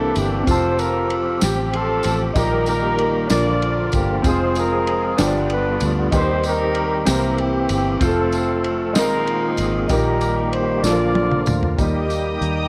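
In a slow, straight 6/8 pulse, this short cut from a longer slow gospel piece moves with a soulful, reverent calm. A mellow horn section carries the melody up front, in jazz style and with light vibrato. A clear, natural grand piano and a round, foam-muted fingered electric bass accompany it. Behind them, a reedy, bright tonewheel organ holds sustained chords through a fast rotary speaker, light overdrive and chorus vibrato, with audible key click. A gritty, saturated soul drum kit with dark cymbals and a rolled-off top, plus a jingly tambourine, keeps time, and the drums play a fill from 10.8 to 11.8 seconds. As the horns finish at 11.8 seconds, a distant, bowed studio string section with a gut-string tone enters on high sustained chords, all set in a moderate echo-chamber reverb with small-room ambience.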